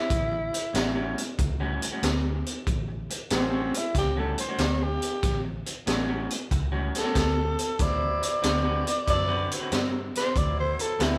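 An electric blues shuffle at 94 BPM with swung eighths, this gritty, soulful excerpt is cut from a longer piece and sounds like a band playing live in one room with light reverb. A growling tenor saxophone takes the solo from the very start, dark, raspy and breathy with subtone, vibrato and scooped notes, sitting up front over the band. Beneath it, a crunchy breakbeat drum kit with a punchy kick, high-tuned snare and hi-hat sounds saturated with a rolled-off top, while a vintage muted fingered electric bass adds a round, foam-muted low end. An electric guitar through a small old amp plays a picked, slightly broken-up riff bathed in spring reverb. The harmony rests on A6 until 7.8 seconds, when it moves to D13 and a distant, roomy horn section enters in the background with jazz-style stabs.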